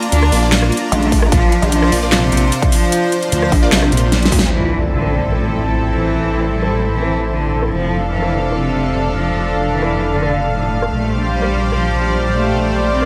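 A clear, bowed cello sings the melody with vibrato and a diffuse ambient delay through this heavy, chaotic half-time wobble dubstep excerpt, set against a saturated, detuned wobble bass, a pulsing pluck wobble bass and a punchy overdriven kick that both drop out around 4.5 seconds, an electronic drum kit with a huge snare and metallic hats, a lush supersaw pad and a cloudy granular pad both pumping to the sidechain, bold orchestra-hit-like synth stabs early on, and a very quiet electronic impact, in a dreamy mix soaked in plate reverb.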